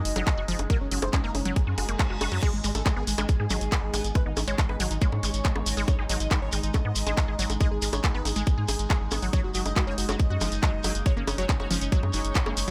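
Psychedelic trance in a straight 4/4, intense and psychedelic, built on a tight, tape-warm electronic kick and a round, deep analog bass up front, with a drum kit of bright hats, crash, handclaps and bongos, while a grainy acoustic shekere joins at 2.4 s just after a background reverse cymbal. A thick, detuned sawtooth unison lead with vibrato carries the melody through phaser and delay, a punchy, warbling unison pluck riff runs through dub echo, and both pump against the kick alongside a resonant, overtone-sweeping drone of sustained chords washed in chorus and reverb. A very quiet, metallic FM wobble bass adds an aggressive second line in two short bursts, and the dry mix shifts between F#5 and G#5 in this brief excerpt.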